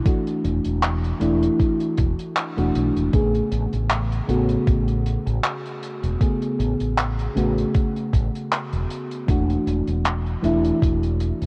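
A 78 BPM groove in 4/4 with a light sixteenth-note swing drives this nostalgic, dreamy vaporwave fragment in A major, built on a thumpy, sampler-style electronic kick up front and a tight funk kit with handclaps and hi-hat sitting in a small room. A soft, full-bodied FM electric piano with a faint noise layer and subtle chorus carries the chords from E9sus4 to Amaj9 and back, while a round, dark fretless bass washed in lush chorus joins at 0.4 seconds. Everything is coloured by worn, warbling cassette tape with pitch drift, tape echo on the piano and light reverb, and the clip is cut from a longer piece.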